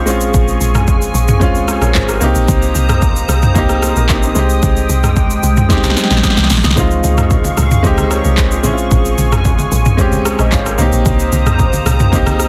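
Late-night and hypnotic, this amapiano excerpt at 112 BPM pairs a worn, up-front baby grand piano and a hollow, flute-like pad with ensemble chorus and sidechain pumping over Bbm9, Cm7 and Dbmaj7 chords, while a round, dark log drum bass and an overdriven deep house kit with a punchy snare and metallic hats drive a dense, heavily limited mix, and after a drum fill at 5.7 seconds, damped, low-tuned congas enter quietly at 6.8 seconds.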